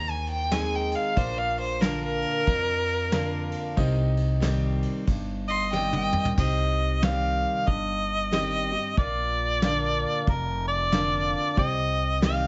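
A swung 4/4 groove at 92 BPM drives this brooding, dusty honky-tonk and classic country fragment in C minor, carried by a soft brush drum kit with dark cymbals and a tight kick, and a woody, thumpy pizzicato upright bass on gut strings. A full-bodied, picked jumbo acoustic guitar and a concert grand piano, intimate and polished with audible action noise and long sustain, sit underneath as accompaniment, the piano kept in the background. A clear, focused fiddle, bowed up front with light vibrato, takes a solo from the start until 6.4 seconds. A mellow harmonica enters at 5.5 seconds, and the drums break into a fill at 5.7 seconds before the harmonica takes over the melody with vibrato, scooped notes and a vintage tone bathed in plate reverb. Light reverb and a rolled-off top end lend the whole piece a dusky, old-time feel as the chords move from Ab through Bb and back home to C minor.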